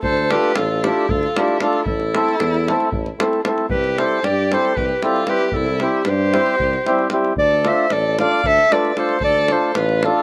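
A fiery, bittersweet Balkan wedding-band tune in 7/8 at 228 BPM (counted in eighths) opens with a warm, classical-style clarinet up front on the melody. Alongside it from the start are a dark, bowed violin on a second line with vibrato and portamento, a distant tuba with light vibrato on the bass, and a deep acoustic davul, while a reedy, mellow accordion enters at 0.3 s with up-front accompaniment. The dry outdoor sound carries the harmony from D minor through A minor into a new section on C at 3.7 s before returning to D minor, in a passage cut from a longer piece.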